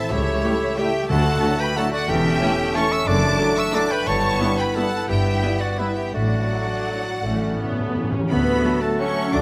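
Rich, expressive violins carry the melody high above a full orchestra in this festive, sweeping ballroom waltz, their vibrato close and bowed with an ensemble sheen. A pure, straight-toned flute, a mellow close-miked cor anglais and a softly placed clarinet weave second lines around them, while a second, softer violin section sits distant in the background. Beneath, a mellow bassoon and lush violas fill the accompaniment, a concert harp rings out arpeggios, and a cello section with portamento joins a smooth double bass section on the bass line. Very quiet horns and a clear trombone section hold sustained chords, and timpani with calf heads make brief entries, including a fill from 7.2 to 8.3 seconds before the harmony settles home on D at 8.3 seconds. The rubato feel and a moderate scoring-stage reverb give this short passage, cut from a longer piece, a spacious, ceremonial glow.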